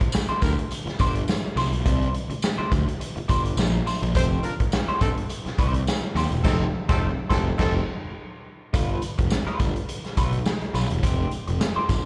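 Funk at 105 BPM in 4/4 with a swung sixteenth feel, this gritty, strutting excerpt rides on a saturated garage drum kit with a punchy kick and a rolled-off top, a round, overdriven fuzz bass picked up front, and a slightly broken-up electric guitar comping through wah and slapback echo over C9 and F9 chords. A tight, clear horn section with vibrato plays a second line with slapback echo, entering briefly at 0.4 seconds and then from 4.2 to 7.7 seconds, while a jingly vintage tambourine sits in the background and the band hits an accent between 6.4 and 8.7 seconds. The sound is that of a live club gig heard through the venue's PA with small-room reverb, moving to a G9 section at 8.7 seconds before closing on F9sus4.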